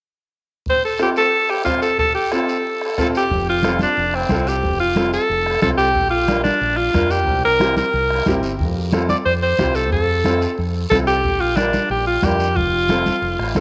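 A brisk, straight cumbia groove in 4/4 opens at 0.7 seconds with a distant, soft-beatered bombo, a raspy guiro and an edgy, forceful alto saxophone with vibrato carrying the joyful, sunny melody up front, while a clear, woody upright piano comps underneath from 1.0 seconds. A round, punchy fingered electric bass joins at 3.3 seconds and thick-skinned, damped congas at 3.6 seconds, all set in a generous, wet plate reverb in this short cut from a longer piece.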